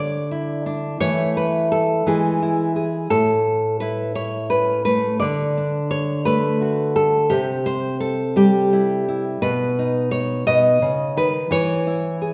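A fingerpicked nylon-string guitar carries this gentle, hopeful folk passage alone, its warm classical tone sitting up front in a lilting 6/8. It opens on Dsus2 and Esus4 before resolving through E to A, then at 5.2 seconds moves into a new section that steps through D, C and B before landing on E. The guitar rings in the generous reverb of a church or concert hall, and this short passage is cut from a longer piece.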